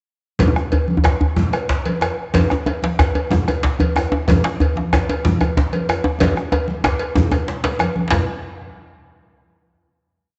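A moderate echo-chamber reverb gives this short West African drum ensemble piece a roomy, dusky sound, with its highs rolled off. Over a straight 12/8 at 124 BPM, the mood is festive and powerful, and the ensemble sets in together at 0.4 seconds. A deep, dark bombo sits close and dry beneath a metallic, band-limited cowbell carrying the bell pattern. A medium-tuned djembe with metal rattles is struck with hard hands in a live room, while bright, thin-skinned congas played with soft hands sound distant, as if from a large room. Up front, a second djembe, warm, close and dry with a rich low body, enters at 0.5 seconds to play the lead drum phrases, and a drum fill from 6.2 seconds leads into a final hit at 8.1 seconds.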